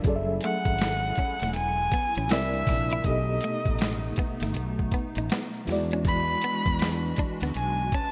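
A gritty, pitched-down boom bap drum kit with a thumpy kick and high-tuned snare opens this warm, sensual neo-soul R&B excerpt alongside a round fretless bass, a reedy electric piano with fast tremolo, a clean picked electric guitar playing a second line and a hollow, flute-like pad with ensemble chorus in the background, before a nasal, earthy erhu enters up front at 0.4 seconds to carry the melody with light vibrato and portamento, the whole mix sitting in a lush hall reverb with bright 1980s-style digital production.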